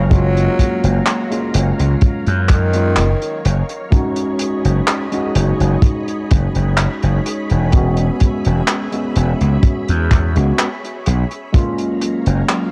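A dark, dry cassette-tape production with a muffled, lo-fi haze frames this faded, nostalgic vaporwave fragment in F# major at a slow 63 BPM, drifting from F#maj7 through B69/F#, E6 and back. A raspy, growling tenor saxophone with light vibrato and tape echo sings a brief melody only until 3.5 seconds, while an overdriven tine electric piano through a combo amp, bathed in lush chorus and tape echo, carries the accompaniment above silky, slow-blooming string-machine chords. Anchoring it all is a punchy, bright slap bass thick with overdrive and tube saturation, set up front beside a tight, rolled-off kick and a warm soul drum kit with handclaps and hi-hat.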